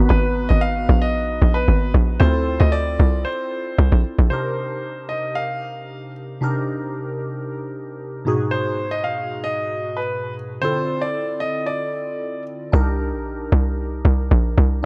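A small room reverb surrounds this short amapiano cut, with a deep, late-night mood at 114 BPM in a straight 4/4. Glassy digital keys carry the accompaniment throughout, their airy, sine-based tone touched by a noise layer, a filter sweep and chorus. A tight, punchy log drum bass sits up front with a percussive FM attack, dropping out at 4.3 seconds and returning at 12.7 seconds. Above it, a clear concert grand piano plays the melody in a narrow upper range, intimate, polished and present with audible action noise, long sustain and a tape echo, before stopping at 12.4 seconds. The harmony drifts through minor ninth chords such as Abm9, Dm9 and Cm9, with a brief turn to Abm7.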